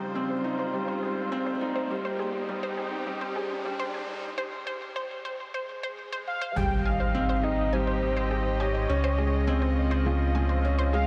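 Piano and strings electronica with a tender, hopeful mood, where a soft felt-muted upright piano riff with delay and shimmer reverb sits up front over a round, deep analog bass, veiled con sordino chamber strings holding sustained chords, and punchy detuned pluck arpeggios under a filter sweep, as a background riser gives way to a break at 4.2 seconds. A velvety chorused synth lead enters with the melody at 6.3 seconds, just before a swell and impact mark the drop at 6.6 seconds, all in a dark production bathed in huge ambient reverb.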